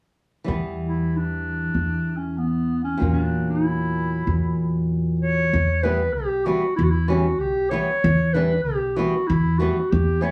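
Klezmer with a festive yet bittersweet mood, cut from a longer piece, where a fingerpicked acoustic flamenco guitar plays accompaniment and a woody, thumpy pizzicato upright bass on steel strings sits up front. From 0.9 s, a mellow clarinet takes the solo melody in a jazz style, with light vibrato, subtone and scooped notes over a smooth top. The room is a wet studio, heard from further back, and the music moves into a new section at 5.5 s.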